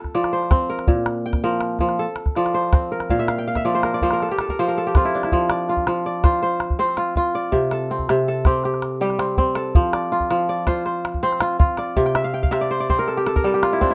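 This is West African traditional string music in a straight 12/8 metre, hypnotic and joyful in mood, cut from a longer piece. The kora carries the music with flowing arpeggios across a broad range, its fingerpicked tone mellow, ringing and crisp, placed up front. Alongside it, the calabash sounds deep, close and dry, also up front, and both parts play together from start to finish. The kora breaks into fills at 3.1 seconds and again at 12.1 seconds, with a new section opening at 5.3 seconds. A light reverb gives the pair a gentle sense of space.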